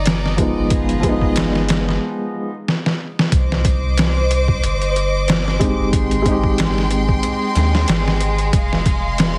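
A heavily compressed, radio-like sound with studio reverb frames this smoky, hypnotic trip hop excerpt at 92 BPM in 4/4, with a light swing on the sixteenths, set in C harmonic minor and tuned to A4 = 436 Hz. Gritty, pitched-down sampler drums with a thumpy kick and overdrive sit up front over a round, deep analog bass, while a bright, biting violin section holds sustained chords and a dark, woody upright piano adds accompaniment through harmonic tremolo and tape echo. A break arrives at 2.0 seconds with a drum fill leading into the second section at 3.3 seconds, where the harmony moves from Cmadd9 through Abmaj7 toward Fm.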